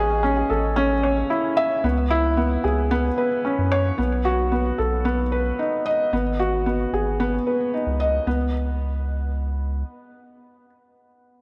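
Piano-and-strings electronica at 112 BPM in a straight 4/4, this intimate, cinematic fragment is cut from a longer piece and tuned slightly below standard pitch. A felt-muted upright piano carries the riff up front, its soft, mellow tone marked by short sustain and audible action noise, with a delay trailing its notes. Beneath it, a round analog bass sits close and deep, its dark, sine-like voice sustaining from a fast attack until it stops at 9.8 s. The harmony moves through Amaj7, C#m7, B7 and G#m7 before shifting at 8.3 s to a suspended Bsus2 over C#, and once the bass drops out, the piano carries on to the close at 11.4 s. A moderate but huge ambient reverb with a long tail surrounds the whole recording, giving the up-front instruments a spacious, filmic setting.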